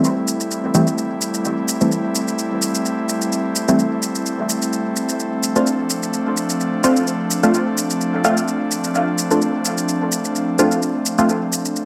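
From the first moment, a breathy, airy pad, a filtered dub chord stab and a shaker sound together in this meditative, hypnotic dub techno fragment cut from a longer piece, moving at 128 BPM in 4/4 with a light swing on the sixteenths. The pad holds soft, sustained chords with a slow attack and long release, its detuned triangle and sawtooth tones layered with noise and treated with chorus, sitting up front with a bright sheen. Alongside it, the muted, deep chord stab plucks short, mellow sawtooth hits through chorus, phaser, cassette tape colour and dub echo, while a filter sweep keeps it evolving across the whole passage until it drops out at 11.3 seconds. The electronic shaker ticks along quietly in the background. The harmony rests on Am7 before shifting to Dm7 at 5.2 seconds, and a moderate plate reverb frames the glossy, 1980s-style digital production.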